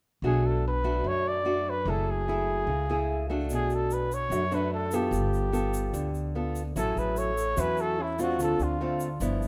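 Fingerpicked nylon-string guitar, with audible finger squeak, and a woody, thumpy pizzicato upright bass open this sunny, sophisticated bossa nova excerpt at 147 BPM. They are joined almost at once by a dark, breathy jazz trumpet carrying the solo melody up front with light vibrato. A grainy, bright egg shaker enters at 3.5 s, and at 6.8 s a pure, mellow alto flute adds a crisp-attacked second line in the background as the chords move from Bm7 and F#m9 toward A6 and Dm7, all set in light reverb.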